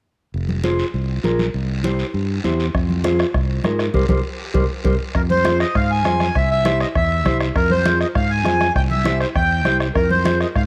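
This recording carries the homemade character of a cassette, with light reverb and a small-room ambience around the players. It is a fiery, passionate cumbia at 200 BPM in a straight 4/4, set in F harmonic minor and moving between F minor and C. From 0.3 s a warm, fingered electric bass sits up front with a direct, amped tone, while bright, damped congas stay in the background and a raspy, band-limited guiro adds a quiet vintage texture. A dark, clean electric guitar plays fingered accompaniment, its mellow sound coloured by cassette tape. A close bombo struck with a soft beater joins at 2.7 s, and the band hits an accent together just before the accordion takes the melody at 5.2 s, reedy with slow beating and mid-forward in the mix, its line carried by cassette tape and tape echo.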